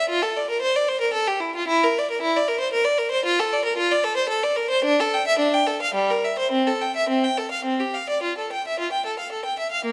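Set in a moderate recital hall reverb, this radiant, dance-like baroque-style suite movement for unaccompanied violin in F major moves in a rubato 3/4 at 100-118 BPM, with a single bowed violin, clear and focused with vibrato and heard close and up front, ranging from G3 to G5 across the whole 9.9 seconds of this fragment cut from a longer piece.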